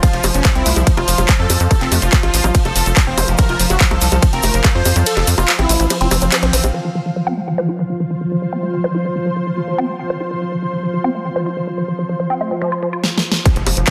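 A punchy, up-front electronic kick drives this intense psychedelic trance drop alongside a tight, sawtooth sequencer bass and a big-room kit of huge snare, handclaps, hi-hat, ride cymbal and bongos, with a grainy cabasa and a background zap adding detail, until the kick drops out at 5.1 seconds. A thick, bold unison lead carries the melody with phaser and delay, over a woody, warbling wave-folded pluck riff, a bubbling stepped-filter texture and an ethereal, airy pad with tremolo, all pumping against the beat. From 6.7 seconds a filter sweep moves through the synth texture, and a drum fill leads to an electronic impact at 13.5 seconds in a dense, heavily limited mix.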